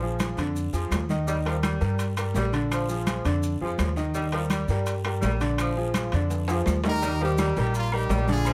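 A straight 4/4 salsa groove at 167 BPM in Eb major drives this festive, sunny fragment, with a dark, pizzicato upright bass and a bright, polished upright piano up front over a Bb7 and Eb vamp, while a mellow, vintage saxophone section with vibrato carries a low second line. Soft-handed congas sit in the background from the start. Very quiet, close woody claves, raspy guiro, grainy maracas and ringing, saturated timbales with agogo bells enter at 0.2 seconds, the last three joining the congas in the background. After a drum fill at 6.3 seconds, a brilliant, punchy, tight horn section takes the melody from 6.9 seconds, and the mix carries light reverb with close, detailed miking.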